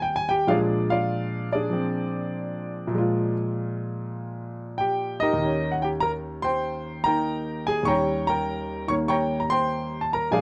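A dark, warm production with light reverb frames a clear, up-front grand piano playing solo jazz with a swinging feel, its natural tone carrying audible action noise as it moves from Bb7 to Eb7 at 5.4 seconds across a range from Eb2 to Db6 in this short cut from a longer piece.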